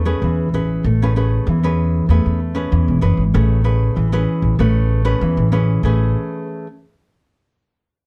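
Festive and lively, this short samba-and-choro excerpt opens on an Amaj9 chord, with an up-front fingerpicked nylon-string guitar, full-bodied with audible finger squeak, accompanying a woody, thumpy pizzicato upright bass that drops out at 6.1 seconds before the guitar stops at 6.7 seconds, all set in a dark, warm production with light reverb.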